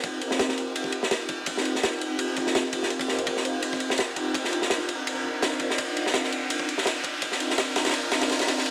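A soft string machine and a crunchy breakbeat drum kit open together on this raw, atmospheric drum and bass and jungle excerpt, which is cut from a longer piece and builds throughout. The string machine holds silky, mellow sustained chords, moving from F9sus4 to Cm11 at 4.3 seconds, its vintage pulse and sawtooth tones colored by phaser, ensemble chorus and a filter sweep. Up front, the acoustic kit of kick, snare and ride cymbal sounds gritty and saturated in a small room, with a punchy kick, a medium-tuned snare, dark cymbals and a rolled-off top, all shaped by high-pass filtering and a gentle swing. At 2.0 seconds a very quiet electronic riser joins beneath the other parts. Light studio reverb and a layer of vinyl crackle give the recording a dusty, lived-in feel.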